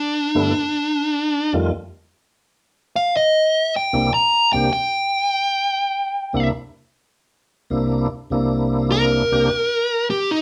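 A dark, smooth overdriven electric guitar opens this soulful, laid-back blues excerpt in C mixolydian at 100 BPM with a swung 4/4 feel, joined at 0.3 seconds by a full, lightly overdriven tonewheel organ turning through a slow rotary speaker and chorus vibrato, both up front over G, F7 and C7 chords in a band playing live in one room with moderate reverb, before the guitar takes a solo from 8.3 seconds.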